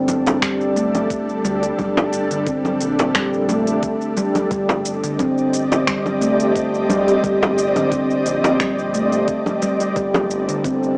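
A ringing, dark handpan rolls out meditative arpeggios up front from 0.4 seconds, just after a close, dry acoustic frame drum enters, in this mystical, hypnotic organic downtempo excerpt with a light swing. Also up front, an ethereal, airy pad holds slow-blooming chords with ensemble chorus, tremolo, plate reverb and sidechain pumping, while a round, deep analog bass sits low with tube saturation. An overdriven electronic kit of congas, finger snaps, crisp hi-hat and shaker, plus a gritty, thumpy kick in the background, completes a hazy cassette-recorded sound heard as if through a small speaker.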